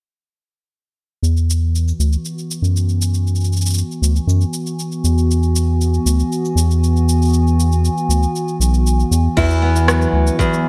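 A straight 4/4 groove at 118 BPM drives this warm, playful folktronica excerpt, where a round, deep analog bass and a tape-warm organic electronic kit of cabasa, crash cymbal and rim click start at 1.2 seconds beneath a warbling, lo-fi pad of sustained chords with chorus and its own reverb, before a bright, fingerpicked nylon-string guitar playing arpeggios through delay and a soft electronic kick join at 9.4 seconds for a brief new section in a lightly reverberant room.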